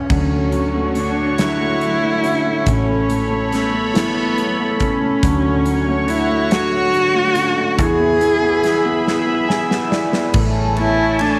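A bowed solo cello opens the recording at 0.0 seconds, dark and woody with vibrato, sitting up front as it carries the melody of this swaying, heartfelt pop ballad in 6/8 and A major at 47 BPM. Almost at once the rest of the band joins: a mellow upright piano with long sustain plays the accompaniment, a sawtooth pad with detuned, slow-attack chords and chorus evolves brightly above, and a very quiet clean, fingered electric guitar adds compressed arpeggios. Underneath, a vintage foam-muted fingered bass gives a round, amped low end, while a huge arena drum kit brings a punchy kick, a medium-tuned snare, hi-hat, and bright ride and crash cymbals in a pumping hall sound. The harmony moves through Dmaj7, Aadd9, Dmaj7 and E, and from 9.1 seconds the drums and piano both play fills that lead into a new section on Amaj7 at 10.3 seconds. A moderate echo-chamber reverb gives the whole mix a spacious studio glow before the piece is cut off at 11.4 seconds.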